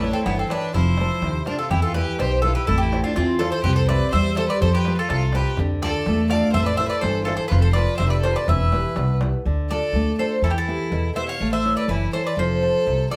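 Intense and driving, this Greek folk piece at 124 BPM in 2/4 and E phrygian puts a metallic, double-strung bouzouki melody up front, joined by a close, airy violin second line with vibrato, fingerpicked nylon-string guitar accompaniment, a woody, thumpy pizzicato upright bass, and a deep clay darbuka in the background with a compressed, saturated tone until it drops out at 9.4 s, all played live in one room with moderate studio reverb.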